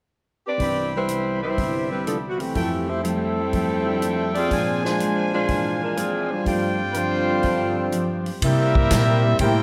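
A large studio room lends a moderate reverb to this brassy, energetic big band swing excerpt, set in C major at 123 BPM with a swung 4/4 feel. A mellow, up-front saxophone section carries the melody with light vibrato and a soft attack, while a brilliant trumpet section adds stabs from 0.6 seconds over a Cmaj7, Fmaj9, Bb9 and G7sus4 progression. Beneath them, a warm grand piano accompanies alongside a full-bodied, picked steel-string acoustic guitar in the background, and a natural-sounding drum kit with punchy kick, medium-tuned snare, hi-hat and ride keeps the swing moving. A warm trombone section slips in at 7.0 seconds with a second line, and at 8.4 seconds the harmony shifts to C7 as a clear, close-miked trumpet section takes over the melody, backed by very quiet sustained trombone chords and a woody, thumpy pizzicato upright bass.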